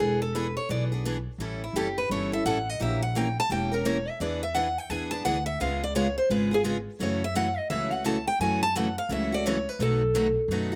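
A bright, up-front steel-string guitar opens this charming jazz manouche passage, playing a swinging lead over a second steel-string guitar and an upright bass from the very first second. The accompanying guitar has the snap of fresh strings, with audible finger squeaks and a slapback echo. Beneath it, the pizzicato upright bass is woody, dark and thumpy, with the sound of gut strings. At 4.2 s a third picked guitar joins, very quiet and tucked behind the others. The lead guitar solos over a progression built largely on dominant seventh chords such as E7, A7 and C#7, with an F#m7 passing by as well. Recorded outdoors with little reverb, the excerpt has a close, dry sound that suits its lively swing.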